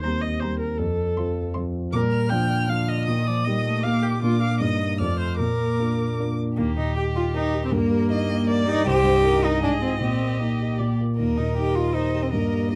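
Graceful and cheerful, this quick classical-period movement for piano quartet in 3/4 at 157 BPM sets a rich, focused violin with vibrato singing the melody over a smooth, even cello second line played close, while a clear viola and a dark, mellow, vintage-toned concert grand with deep bass and long sustain, sitting up front, share the accompaniment, the harmony shifting from Bb major to Eb major at 6.6 s within a moderate studio ambience and a warm production.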